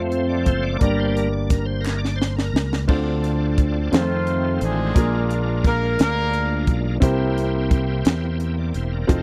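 Slow gospel in 6/8 at 58 BPM, uplifting and reverent, this short cut from a longer piece opens with a bright, shouting tonewheel organ solo through a slow rotary speaker with light overdrive and chorus vibrato, over an intimate grand piano with audible action noise, a round, punchy fingered electric bass and a crisp fusion drum kit with dark cymbals and a high-tuned snare. A drum fill from 1.9 seconds, with a brief distant handclap from a large room, leads into the second section at 2.9 seconds, where a horn section in octave doubling carries the melody from 3.9 to 7.0 seconds over changes from Dm7 through F7 and Bb7 to C7. The sound is dry and close, in a 1970s-style studio manner.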